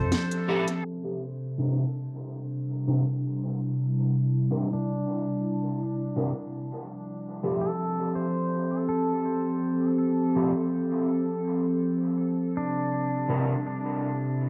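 A warbly, tape-like pad sits up front in this peaceful, spacious ambient dub fragment at 82 BPM in C major, holding mellow, nostalgic chords with a slow attack and long release, roughened by chorus and a grainy vintage sampler grit. Beneath it, a clean, twangy pedal steel guitar played with fingerpicks and slide spins arpeggios through tape echo and a low-pass filter. A dark, slightly broken-up electric guitar adds fingered stabs coated in ensemble chorus and dub echo, entering at 0.5 s and stopping at 13.5 s. An organic electronic drum kit appears only briefly at the start, with a woody snare and crisp hi-hats both low-pass filtered and sent into dub echo. A filter sweep runs from 0.9 s through the rest of the piece as the harmony moves from Fmaj7 to C, back to Fmaj7 and on to C7. The whole mix sits in a moderate echo-chamber reverb with a layer of vinyl crackle, lending a hazy, lo-fi distance.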